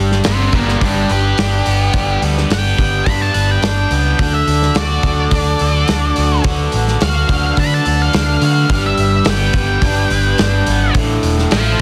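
Upbeat yet wistful, this indie rock excerpt moves at 106 BPM in G major, with a dark, fuzzy octave-fuzz lead guitar soloing throughout, its distortion bathed in plate reverb. Beneath it, a bright, double-tracked garage guitar drives an overdriven riff alongside a round, punchy picked bass and a loose, small-room drum kit with a medium-tuned snare and rolled-off top. A reedy vintage combo organ slips in at 4.2 seconds with background sustained chords as the harmony moves from G to D and back, ending on Asus4, all within a dense, heavily limited modern master.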